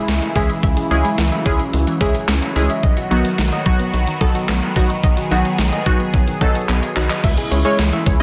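A clean 12-bit digital drum machine sits up front in this driving, nocturnal synth-pop excerpt. Its thumpy kick, medium-tuned snare, hi-hat, handclaps and crash cymbal have a tape-warm, sampler-style sound re-recorded in a large room, and a drum fill arrives from 6.7 to 7.2 seconds. Beneath it, a rubbery square bass with a hollow, bouncy, resonant tone holds the low end, while a soft round pluck plays mellow arpeggios in the background through chorus and tape echo. Analog keys with a detuned sawtooth character enter at 0.4 seconds as accompaniment, treated with chorus and phaser, and a swirling, evolving pad sustains bright chords colored by phaser and chorus. The harmony shifts between two chords, and light reverb and a dense, heavily limited modern master keep the sound full and forward.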